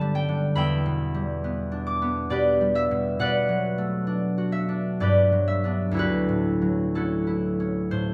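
Classical solo harp, serene and dreamy, unfolding in 3/4 with a rubato feel at roughly 61-74 BPM. The lone concert harp sits up front, its fingerpicked strings sounding bright and ringing across a span from D2 to D6. A wet stone room reverb with a 1.4-second decay surrounds the instrument, giving each note a soft halo of space. The harmony drifts through lush extended chords, opening on Gmaj7#11 and passing through Em7, Bm7 and Gmaj7 before settling on Dmaj9 at 6.0 seconds. Tuned slightly low at A4 = 438 Hz, this brief 8.1-second fragment is cut from a longer piece and feels like a calm, suspended reverie.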